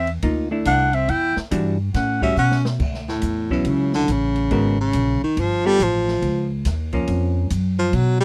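A growling, raspy clarinet opens this playful, sophisticated small-group swing excerpt with a brief melody over a bright, punchy baritone saxophone, woody pizzicato upright bass, and an acoustic drum kit with a boomy kick and dark cymbals, while a clean, fingered hollow-body guitar adds accompaniment. The clarinet drops out at 2.5 seconds, and after a drum fill the baritone saxophone takes a forceful solo full of scooped notes from 2.8 seconds until the close at 8.2 seconds. The dry, close studio sound puts the horns, bass and guitar up front, with the drums sitting lower in the mix.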